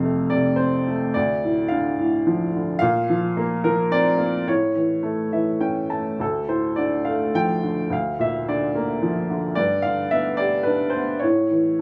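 Set in a small room with light reverb, this brief cut from a longer classical piece features a clear, woody upright piano, played solo and up front in a moody, brooding, lyrical rubato in 3/4, with a short fill from 5.0 to 6.2 s leading into a second section that moves through Dm, Bb/D, G and A.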